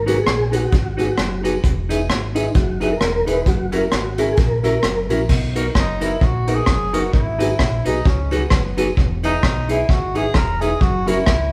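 Bouncy, joyful ska at 131 BPM in B major with a swung feel, played by a band together in one room under a large studio reverb and cut from a longer piece. A mellow, flute-like tonewheel organ with chorus vibrato and a fast rotary speaker carries the melody until 5.1 seconds. Beneath it sit a round, punchy fingered bass, dark clean electric guitar, jangly tack piano stabs, a muffled lo-fi brush kit up front and a very quiet tambourine, moving through G#m7, Emaj7 and F#7. At 5.8 seconds a distant, roomy tenor saxophone with light vibrato takes a solo over Bmaj7, G#m7 and Emaj7 before landing on F#.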